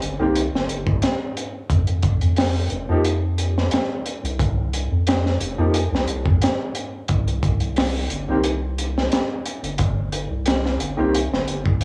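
Dark and smoky, this trip hop excerpt at 89 BPM in C minor pairs a crunchy, punchy breakbeat kit with a high-tuned snare and a round, deep analog bass carrying transformer saturation, while a woody upright piano with long sustain, tremolo, tape echo and 12-bit sampler grit enters at 0.2 seconds over chords moving from C5 to F5 and back to C5 at 7.1 seconds, all recorded to cassette in a small room with light reverb.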